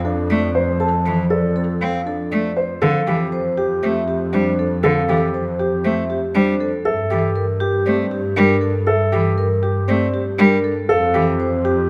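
Classical minimalist pattern music in F major at 119 BPM, this hypnotic, propulsive excerpt sets a ringing, metallic vibraphone melody with slow motor vibrato over warm grand piano arpeggios, a focused, bowed solo cello that sits up front from 0.3 to 11.3 seconds, and a lush, even double bass section, all in light reverb with close, detailed presence as the chords move from Dm7/F through Fadd9 and Gmadd9 to Fmaj9.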